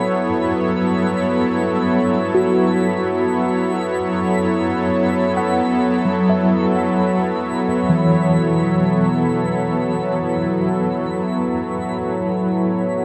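A bright, detuned sawtooth pad sits up front in this serene, reflective free-time ambient excerpt, its soft-attack chords drifting through G, F#m, B5 and A with chorus, tremolo and shimmer reverb. Beneath it, a dark bowed cello section holds the bass in the background while a twinkling granular texture sparkles high above with an octave-up shimmer, both fading out across the whole passage. From 2.3 to 11.2 seconds, a worn, slightly out-of-tune tine electric piano plays mellow arpeggios through a combo amp with tremolo and tape echo, all set in a vast, echoing space with a huge, wet reverb.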